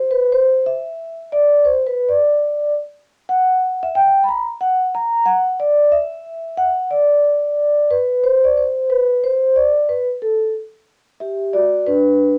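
A smoky, cool hip hop fragment at 91 BPM in 4/4, with a 64% swing on the sixteenths, carried entirely by a solo vibraphone played with soft mallets between D4 and B5. The vibraphone sits up front, mellow and ringing with a slow motor vibrato and a vintage, band-limited color. Light reverb and the warbling pitch drift of worn cassette tape surround it, and at 10.9 seconds it settles onto a rootless Cmaj9#11 before the cut at 12.4 seconds.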